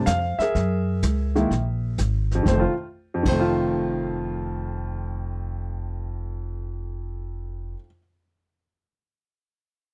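Swung eighths at 126 BPM in 4/4 drive this sophisticated jazz piano trio passage in F mixolydian, where a clear, up-front baby grand with short sustain and a touch of slapback echo carries the melody over a woody, growly pizzicato upright bass, while a vintage brush kit with dark cymbals and a punchy kick plays only until 3.3 s, all in a dry, close 1970s-style studio sound as the harmony moves from Gb9 to F7 at 2.5 s.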